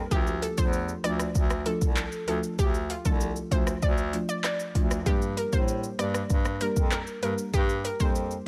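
An up-front electronic drum kit with a deep kick, metallic hats, handclaps, rim clicks and shaker drives this tough, bouncy dancehall excerpt, its produced sound carrying a tape-like glow. Beneath it, a bright, distant bass clarinet carries the low line in a roomy classical style. A dry, woody marimba played with soft mallets comps close and full, while a vintage analog pluck with a warbling sawtooth-and-square tone, chorus and digital delay carries the melody, all moving from Dm to Gm at 5.1 seconds within a digital ambience.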